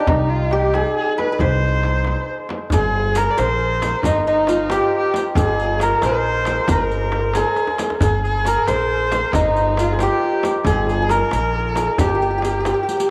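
A moderate plate reverb with a long tail surrounds this hypnotic, melancholic Persian modal ensemble piece, cut from a longer performance and moving in a straight 6/8. Up front, a hammered santur carries the melody with a shimmering, ringing tone, while a single bowed kamancheh plays a rich second line, smooth and even, with vibrato and portamento. A pizzicato upright bass on steel strings sits close by with a woody, growly low end, as a warm, tight tombak stays very quiet and a small-room frame drum sits in the background. At 2.7 seconds a riq joins far back, its dark jingles struck with soft hands, opening a new section of the passage. Drum fills mark the moments at 7.6 and 12.9 seconds.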